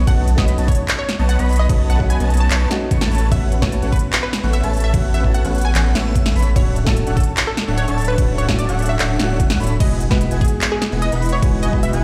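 Heard through a big sound system in a bare room with large studio reverb, this euphoric, playful half-time future bass excerpt pairs a deep, saturated sub bass and a huge, detuned supersaw riff, both pumping to the sidechain, with a punchy unison pluck melody trailing delay, a mellow baby grand piano with audible action noise, and a soft, chorused, dreamy arpeggiated lead in the background, all over a knocking electronic kick and a pop kit with a fat snare, crisp hi-hats, handclaps and crash cymbal, as the chords move from B7 through A69 and Dmaj7 to Emaj7.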